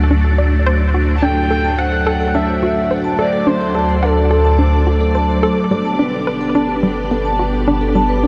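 Cosmic and expansive, this fragment of ambient, sequencer-driven space music opens on lush, phased string-machine chords over a round, deep analog bass, with a hollow, bouncy square-wave pluck riff running through chorus and tape echo. At 1.2 seconds a breathy, flute-like synth lead with vintage 12-bit grit carries the melody until 5.2 seconds, while a ringing vibraphone played with soft mallets adds echoing arpeggios through to the end. The harmony moves from D to G at 5.7 seconds, and everything sits inside a huge, wet ambient reverb.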